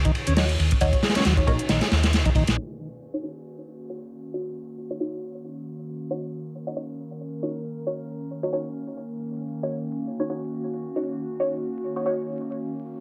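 Vinyl crackle and a low-pass filter give this excerpt of funky, raw breakbeat a dusky, aged sound, set in a moderate studio reverb. It opens on a smooth tonewheel organ riff with audible key click, turning through a slow rotary speaker and digital delay over an Ebm7 chord. A crunchy, saturated acoustic breakbeat kit sits up front with a tight kick, medium-tuned snare and dark cymbals, while a tape-warm electronic hi-hat is layered in the background and a round, amped hollow-body bass plays fingered low notes. The bass drops out at 2.5 seconds and the drums at 2.6, leaving a muted, detuned sawtooth dub chord stab, colored by phaser, analog chorus and delay, to carry on under a long filter sweep. From 2.9 seconds a warbling, nostalgic lo-fi pad enters up front with slow-attack sustained chords, ring modulation, chorus and sidechain pumping.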